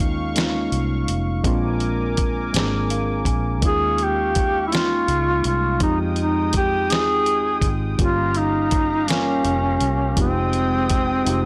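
A slow, yearning R&B groove in 6/8 at 55 BPM opens this late-night excerpt in F minor, with a mellow, worn tine electric piano, a smooth, warbling analog pad with chorus, a dark, round muted electric bass with tube saturation, and a gritty sampler-style drum kit all sounding from the start. The drums sit up front with a thumpy kick and fat snare, while the slightly out-of-tune electric piano adds an early fill. At 3.7 seconds a duduk takes the melody, up front, its vibrato and scooped notes giving it a vintage, folk-style voice. The harmony moves from Eb9sus4 and Bb7 through Fm9 and Gm7b5, and a drum fill arrives at 11.3 seconds. The recording is blown-out and overdriven, with light reverb and digital ambience adding a touch of space.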